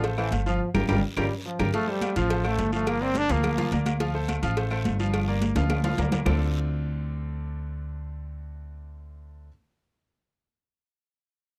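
At a driving 212 BPM in straight 4/4, this danceable salsa excerpt in D minor rides on a dense percussion bed of congas, cowbell and bongos, agogo bells and timbales, and woody, distant claves, all sitting in the background, along with a raspy guiro miked close, until 6.3 seconds, with drum fills at 0.6 and 5.4 seconds. Underneath, an upright bass with a dark, growly, thumpy pizzicato tone sits up front across the whole 9.5 seconds, while a brilliant baby grand piano comps with short, polished chords moving between Dm7 and Gm7, passing through a G9sus4. A bright trombone section with light vibrato opens with a brief band accent before giving way at 1.7 seconds to a solo trombone, punchy and close-miked with vibrato, which carries the melody until 3.7 seconds. After the percussion stops, piano and bass carry on alone to close the passage on Dm7. The sound is dry and close, in the manner of a 1970s studio recording with little reverb.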